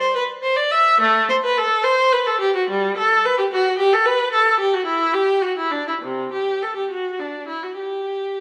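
Radiant and flowing, this short excerpt from a longer piece is a baroque-style suite movement for unaccompanied viola in G major, moving in 6/8 at about 66-74 BPM in dotted quarters with a free, rubato feel. A single bowed viola carries the whole passage, its rich, smooth tone shaded with vibrato and kept even as it spans from C3 up to E5. The instrument sits up front yet carries a distant quality, set in a recital hall whose moderate reverb lingers for about 1.6 seconds.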